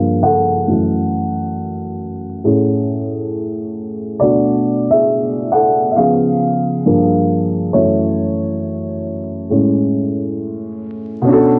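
A hazy home cassette recording with vinyl crackle, light reverb and a muffled, filtered tone opens on a dark, woody upright piano playing alone and up front in a slow, swung hip hop groove. The boxy piano moves through jazzy seventh chords, from Gm7 and F#m7 to Amaj7, Bm7 and C#7, while a filter sweep runs across the whole 11.3 seconds. The mood is melancholic and nostalgic, and the clip is cut from a longer piece.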